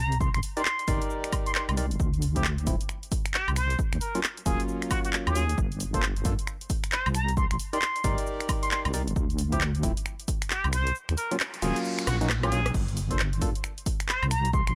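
A sub drop opens this bouncy, skippy two-step garage excerpt as a deep, wobbling bass with chorus and a brilliant, plunger-muted jazz trumpet with vibrato and analog delay start together, joined by a punchy electronic kick, an up-front house kit of tape-warm hats, handclaps, finger snaps, rim click, cabasa, woodblock and crash, and hollow, ring-modulated organ stabs over minor-ninth chords, until the kick drops out at 11.0 s beneath a background noise sweep and a drum fill, returning at 12.7 s, in a dry, gritty hardware sound.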